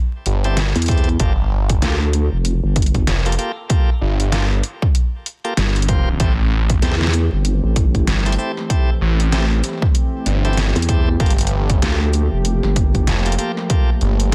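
Swung 16th-note grooves at 96 BPM in 4/4 drive this funky, gritty glitch hop excerpt, where a punchy, up-front electronic kick and a dubstep kit of hi-hat, shaker and deep snare lock in with a thick, swirling detuned saw bass with phaser and tube saturation, while a nasal, resonant vowel-sweep wobble bass with chorus enters from 0.8 to 3.1 seconds and again from 6.8 seconds; bright, shouting tonewheel organ stabs with light overdrive, a stopped rotary speaker, delay and sidechain pumping move between Am7 and Gm9, and from 6.7 seconds a warbling, nostalgic lo-fi pad with chorus and its own reverb adds mellow sustained chords, all within a dense, heavily limited, fairly dry mix dusted with vinyl crackle.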